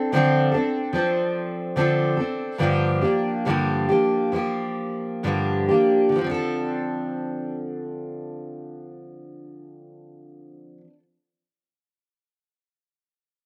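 Dry and close, with the open air of an outdoor recording, this short pop excerpt is carried entirely by a picked steel-string acoustic guitar: a full-bodied jumbo tone, double-tracked and up front, with audible finger squeak. The mood is reflective and wistful as the accompaniment moves from Dm7 to Gm7, slowing down through the first 6.2 seconds before returning to Dm7 for the second section.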